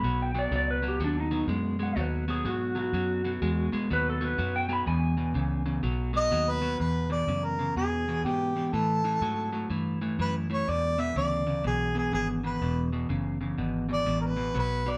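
Rollicking and laid-back, this electric blues shuffle in E major swings at 124 BPM, with a twangy, clean lap steel guitar taking a slide solo with volume swells until 6.3 s, while a mellow, roomy harmonica carries the melody from 6.2 s over a slightly broken-up, compressed electric guitar riff and a dark, foam-muted, round electric bass, all captured as a band playing live in one room with moderate studio reverb.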